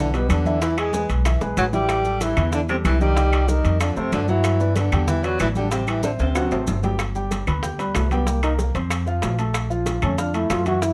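Sophisticated and sunny, this Afro-Cuban jazz passage in G major moves at a brisk 188 BPM in a straight 4/4 and is cut from a longer piece. A mellow, close-miked trombone carries the melody with vibrato, a soft attack and scooped notes, bathed in plate reverb, and it takes over as soloist from 7.0 seconds as the harmony shifts through G, C5, F and Bb5. Beneath it, a distant, roomy tenor saxophone adds a second line with its own vibrato until 6.8 seconds, while a grand piano accompanies with an intimate tone and audible action noise. The woody pizzicato upright bass sits up front, anchoring progressions such as Em7, Am7, Cm7 and D7. A percussion bed of ringing metal-shell timbales, tight high-tuned bongos, very quiet congas, grainy maracas and dry claves fills out the rhythm, with the bongos and claves kept in the background and drum fills at 1.4 and 6.2 seconds. The recording is detailed and close, with only light reverb.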